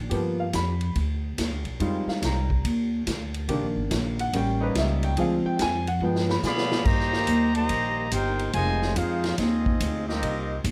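A swinging 4/4 pulse at 142 BPM drives this dramatic big band jazz passage in C minor, cut from a longer piece, with an intimate, up-front grand piano taking a solo over pizzicato upright bass, background trombone chords and a distant, roomy drum kit with dark cymbals and a punchy kick, as the harmony moves from G7#9 through Fm7, Cm7 and A7b9 toward G7b9. A drum fill at 6.0 seconds sets up the second section, where the piano has stopped and a trumpet section with light vibrato carries the melody from 6.5 seconds over a mellow, soft-attacked second trombone line. The woody bass stays close throughout, and the dry sound keeps the piano's action noise and deep low end plainly audible.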